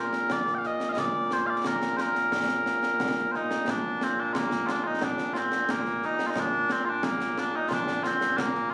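Recorded on a phone in a club-sized room, this short excerpt carries light reverb and compression. It is Scottish pipe music in a straight 2/4 feel, with a stirring, ceremonial mood, cut from a longer piece. Mellow small bagpipes carry the melody up front from the opening, their sweet, continuous tone ranging from Bb2 up to G5. A concert snare drum and concert bass drum sit further back, adding bright cymbals and an acoustic, live-room character beneath the pipes. The passage states the same section twice, with the second pass beginning at 3.7 seconds and running to the close at 8.7 seconds.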